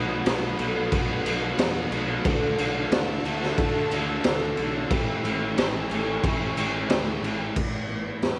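Hazy and blissful, this shoegaze and dream pop rock piece moves at 90 BPM in A major, cut from a longer performance and captured fairly dry on a home cassette recording. A raw garage drum kit sits up front from 0.3 seconds, its boomy kick, high-tuned snare, hi-hat and crash gritty and saturated with a rolled-off top, while a growly fuzz bass drives underneath and a clean semi-hollow electric guitar riff with reverse reverb hovers in the background. Quieter layers thicken the haze: a dark overdriven guitar riff, a bright double-tracked distorted riff that drops out at 7.5 seconds, a woody, shimmering twelve-string acoustic arpeggio, and a swirling, detuned analog pad whose sustained chords, washed in phaser and chorus, pass through B7, Dmaj9 and Amaj7 to Aadd9.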